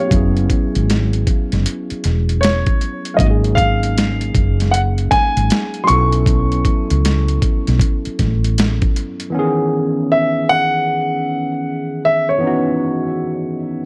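Introspective and sultry, this neo-soul R&B fragment moves at an unhurried 78 BPM in C# minor, with a swung sixteenth-note feel. A grand piano carries the melody high in its register, its tone intimate and natural, with the soft noise of its action audible up close. Beneath it, a tine electric piano plays the accompaniment through a combo amp, bright and barky with overdrive grit and a coat of analog chorus. A woody fretless electric bass, round and hollow-bodied with a subtle chorus, sits up front alongside a compressed, sampler-style boom bap kit of thumpy kick, medium-tuned snare and hi-hat, roughened by overdrive and re-recorded in a small room. The harmony drifts through suspended ninth chords before settling on C#m9 at 9.3 seconds. The bass drops away just before, and the drums drop out at that chord, so the two keyboards carry on alone under light digital reverb in a dark, warm-toned production.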